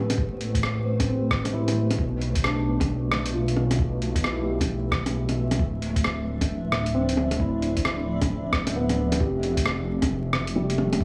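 A swung 133 BPM future garage groove in 4/4 carries this nocturnal, rainy excerpt, where a thumpy, muffled kick supports lo-fi sampler-style bongos, hi-hat and rim click that sit up front beside a deep, rumbling detuned saw bass with tube saturation, while a felt-muted upright piano with audible action noise and digital delay and a cloudy, evolving granular pad pump under sidechain through Am9, G13/B, Dm9 and Fmaj9 amid vinyl crackle and small room ambience.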